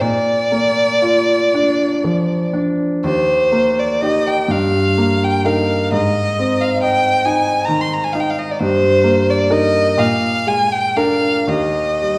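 Serene and lyrical, this brief romantic classical duo in Eb major drifts in a slow, rubato 6/8 at around 38-46 BPM, tuned to A4 = 435 Hz and cut from a longer piece. A single bowed violin sings the melody up front with a rich, focused tone, vibrato and a smooth top, while a clear, vintage-tinged grand piano supports it from low bass to middle register, both playing throughout the 12.2 seconds. The pair sit in a wet recital hall heard from further back in the room, moving from Bb through Ab and a Bb7 before settling home on Eb.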